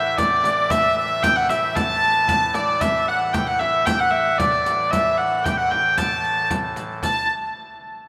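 This short cut from a longer medieval dance opens with a reedy, smooth-topped hurdy-gurdy carrying the melody up front, joined in the same high register by a bright, folk-style shawm playing a second line set back in the background. Beneath them a soft chamber organ holds a low drone on an oboe stop, its chamber voicing touched with a little chiff. At 0.2 seconds a deep, large frame drum enters, played with hard hands and sounding compressed and saturated, alongside a riq whose dark jingles sit quietly behind, struck with soft hands in a live room. The dance moves at 114 BPM in a straight 2/4, and its mood is mysterious and ancient. A lush, wet hall reverb surrounds the parts, while the overall mix keeps the rough feel of a home demo.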